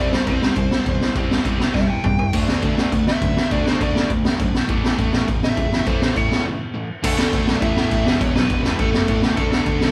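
Rowdy and rebellious, this punk rock passage is driven by a raw garage drum kit placed up front, with a boomy kick, a high-tuned snare and a gritty, saturated small-room sound, plus a fill at 1.7 s. A nasal, overdriven lead guitar with a parked wah takes a solo through the opening 7.0 s, with a short break at 6.5 s. Behind it sit a bright distorted rhythm guitar, a sludgy overdriven second guitar and a growly fuzz bass, all captured as a band playing live in one room with light reverb.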